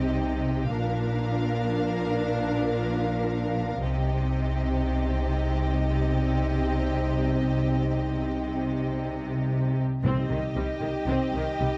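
Cinematic excerpt in free time and C minor with a heroic, epic mood, where a focused chamber violin section carries the melody over a lush symphonic violin second line, expressive, soft-attack violas with portamento in the background, dark, distant French horns holding sustained chords, and a smooth cello section paired with up-front bowed double basses on the bass, all bathed in a moderate scoring-stage reverb, with round, soft-mallet timpani entering at 10.0 s to open the closing passage.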